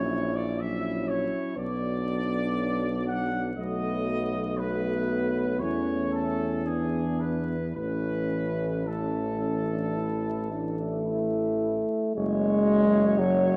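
A mellow trumpet section leads this tender, serene, hymn-like classical brass band piece in A major, carrying the melody with light vibrato from a distant, roomy position, while a French horn section shapes a second line in the background until 12.2 s. Beneath them, a warm euphonium with soft attacks and a shadowed, close-miked euphonium fill out the accompaniment, and a tuba with vibrato anchors the bass in a slow, rubato 4/4 of about 53-61 BPM. The dark production adds moderate reverb and vinyl crackle as the harmony passes through B minor, B7 and E7 to a settled A chord.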